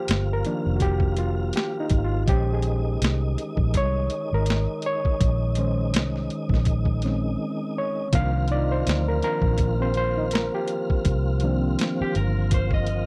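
A barky, overdriven reed electric piano takes the solo from the first moment over slow-rotary tonewheel organ chords, opening a late-night, introspective neo-soul R&B groove that moves between Cm11 and Bbm11 with a swung feel and a brief break at 7.4 seconds. Beneath it sit a round, foam-muted electric bass and a gritty, compressed boom bap sampler-style drum kit with a thumpy kick and high-tuned snare, both up front in a dry, close 1970s-style studio sound. Soft-attack trombone section stabs enter in the background at 8.5 seconds, and a dark, slightly broken-up picked electric guitar adds a second line from 12.0 seconds in this excerpt cut from a longer piece.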